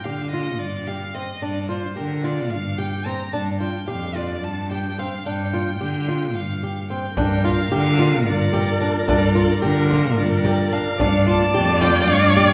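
Heard from further back in a wet recital hall, this hypnotic, urgent chamber piece in 7/8 at 219 BPM in G minor, cut from a longer work, sets a rich, distant bowed violin melody over a clear, up-front cello bass and fingerpicked flamenco guitar arpeggios, joined at 7.2 seconds by a dark, woody viola second line and a deep, compressed frame drum in the background, and at 8.4 seconds by a glassy, ethereal FM pad holding very quiet sustained chords.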